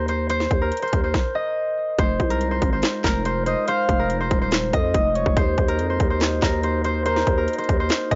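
A fingerpicked concert harp with tape echo opens this dark, hard-hitting half-time trap cut at 142 BPM in F phrygian, over a growling, buzzy 808-style bass and an up-front electronic kit of hard-clipped kick, sharp snare, metallic hats and handclaps, before a brief stop. At 2.0 seconds, glassy, ethereal glass harmonica chords slip into the background as the harmony moves from Cm7/Eb to Fm7 and later Ebm. From 3.5 seconds, a soft, breathy flute-like synth lead with chorus, vibrato and tape echo adds a second line, all heard through a dry, gritty cassette sound with dulled highs.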